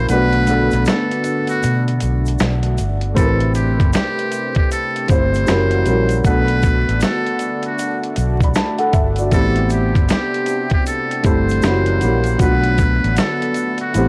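Gritty, dry and flecked with vinyl crackle, this hazy, nostalgic lo-fi hip hop fragment rolls on a swung groove as a buzzy, breathy metal-muted trumpet carries the melody over a boxy felt-muted upright piano with cassette tape colouring, a round, dark fingered electric bass, thumpy compressed sampler-style drums with finger snaps, hi-hat, kick and snare, a faint grainy egg shaker, and a lush detuned pad with chorus sitting in the background, all moving through Bm7, Am9 and F#7b9.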